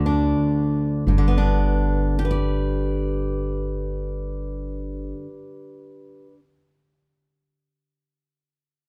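In free time that slows over the first 1.1 seconds before settling onto a G chord, this hopeful acoustic folk fragment in G major pairs an up-front, full-bodied jumbo steel-string guitar, fingerpicked with audible finger squeak, with a woody, thumpy pizzicato upright bass on gut strings that drops out at 5.1 seconds, leaving the guitar to ring on alone until 6.4 seconds in a light reverb.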